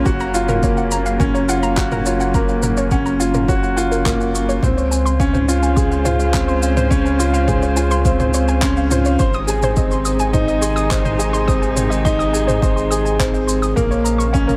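A straight 4/4 pulse at 105 BPM drives this tender, luminous piano-and-strings electronica fragment in Db major, built on a deep electronic kick and a deep house kit of handclaps, shaker and toms, both tape-warm and re-recorded in a small room. Beneath them, a round sine sub bass with tube saturation and sidechain pumping holds the low end. Up front, a clear, woody upright piano plays a riff with its action noise audible and a delay trailing each phrase. A detuned, warbling lo-fi pluck of square and sawtooth waves spins arpeggios high above, coloured by chorus, delay, a filter sweep and sidechain pumping. Behind it all, a veiled, distant string quartet, muted con sordino, holds sustained chords with vibrato and portamento over a Gbmaj7, Dbmaj7, Ab and Bbm progression, the whole mix set in light reverb and digital ambience.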